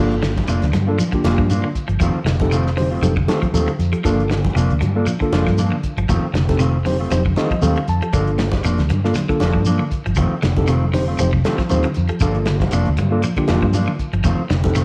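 A reedy electric piano, a picked, slightly broken-up guitar playing arpeggios, a clean, fingered guitar playing stabs and a round, punchy, foam-muted bass set up front open this defiant, funky afrobeat cut at 118 BPM in G minor, with a dry, dark soul drum kit and its tight kick joining at 0.1 s, distant, very quiet congas and a grainy shekere entering at 0.2 s, and the electric piano taking a short fill at 7.1 s, all in a light small-room reverb as the harmony alternates between Gm7 and F7.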